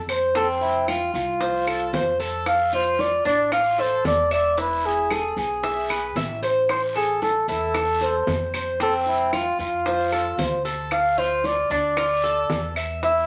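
A dark, veiled trumpet with a bucket mute carries the melody up front in a vintage jazz style, with vibrato and scooped notes, in this nostalgic, danceable excerpt of Cuban son and guajira. Beside it, a metallic, picked Cuban tres plays arpeggios on double strings, and a growly, woody pizzicato upright bass sits beneath them as the chords move through F, Dm, E and Am. Round, low-tuned bongos enter at 0.4 seconds, while woody claves, a raspy guiro and grainy maracas stay in the background, all set in a moderate club reverb with a soft, band-limited top end.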